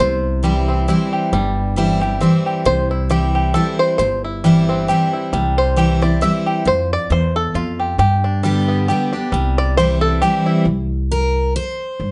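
A rustic, driving bluegrass waltz in C major at 135 BPM with a swung lilt opens on a twangy, percussive fingerpicked banjo solo carrying the melody over a bright, full-bodied picked acoustic guitar and a woody, thumpy pizzicato upright bass, moving through C, F and G before the banjo stops at 10.7 seconds and the guitar takes a brief solo to the end of this fragment, all set up front in a moderate studio reverb.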